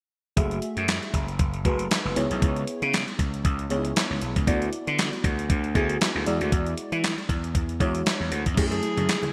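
Danceable, funky early-eighties boogie funk in F# minor at 117 BPM with a light 16th-note swing, this short cut from a longer piece rides a thumpy, up-front 12-bit drum machine with gated reverb and a growly, overdriven slap bass under a dreamy, chorused FM electric piano with a soft pad layer moving through F#m9, C#m7, D69 and E9, before a breathy, intimate alto saxophone, a dark, clean electric guitar with analog chorus and bright, hard-handed congas slip in near 8.6 seconds, all set in a lush hall reverb with bright digital production.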